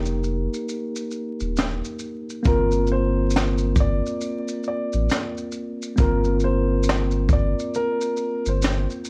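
Vinyl crackle and a light reverb give this short excerpt of lo-fi hip hop a hazy, melancholic sound. At a slow 68 BPM in 4/4 with a swung sixteenth feel in G minor, a vintage brush drum kit sits up front with a punchy kick, high-tuned snare, hi-hat and shaker, its rolled-off top roughened by 12-bit sampler grit. A round, sine-like sub bass with a fast attack and sustained notes holds the low end. A clean tine electric piano, heard through its built-in speakers, plays the chords F9sus4 and then Gm11. The first 2.5 seconds form a break before an upright piano enters with the melody, its woody, intimate tone carrying audible action noise and long sustain through an analog delay.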